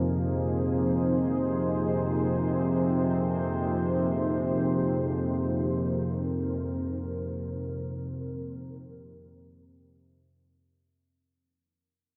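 A deep, detuned pad of sustained F minor chords with a ring-modulated, wave-folded edge and a warbling, pulse-width-modulated analog drone low beneath it open this ominous, cavernous dark ambient fragment in free time, both bathed in a huge, 8.1-second reverb tail before the music fades out from 5.5 to 11.0 seconds.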